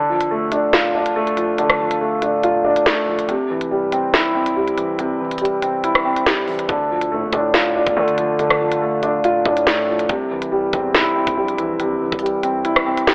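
Dark and ominous, this half-time drill hip hop clip opens with a dark, boxy concert grand piano moving between D minor and C chords and gritty, up-front drill drums with a knocking kick, sharp snare and crisp hats, before a deep, sine-toned 808 bass enters at 6.7 s, all set in a plate-reverbed, telephone-filtered sound, and the kick drops out at 12.6 s.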